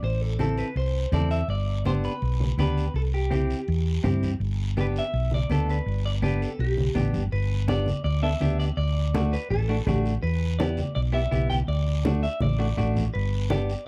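A round, dark hollow-body bass sits up front in this sunny, danceable cumbia fragment, joined by a twangy, compressed electric guitar accompaniment from 0.4 seconds and a bright, picked lead guitar melody wet with spring reverb and slapback echo. A raspy guiro adds texture while soft-handed, low-tuned congas stay in the background of a dry, close 1970s-style studio sound, with the chords moving from Am through G and C before a second section shifts to D and Em. A drum fill arrives at 12.4 seconds as the passage lands on G.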